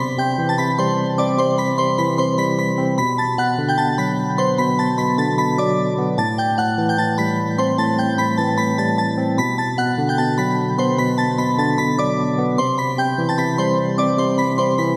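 A half-time groove in 4/4 carries this menacing, eerie hip hop fragment, cut from a longer piece, as a tine electric piano lays down clean, direct accompaniment up front across chords moving from Cmaj7 through Bm7 and Am7. Above it, a glassy FM synth bell sings the melody with crystalline, fast-attack notes that decay into chorus and delay. The whole dreamy mix is soaked in a lush hall reverb, and the opening passage returns at 9.4 seconds.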